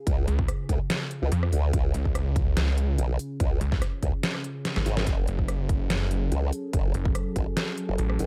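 The recording has a dark, dry production with little reverb, its bass and drums pushed up front in an aggressive, menacing short cut from a longer heavy wobble dubstep piece. At 144 BPM in a half-time feel with a light swing on the sixteenths, a punchy, tape-warm electronic kick and a layered dubstep kit with a deep snare, crisp hats and rim clicks drive the groove, with a drum fill between 4.7 and 5.1 seconds. Two basses dominate in F# harmonic minor: a formant-sweep wobble bass, detuned and chorused with overdrive, and a snarling, growling saw bass thick with distortion and a moving notch filter. Far behind them, an evolving wavetable pad holds morphing, slow-attack chords with chorus and its own reverb, pumping under sidechain. The harmony rests on C# before shifting to F#madd9 at 5.1 seconds, and the kick drops out at 7.4 seconds as the other parts carry on to the end.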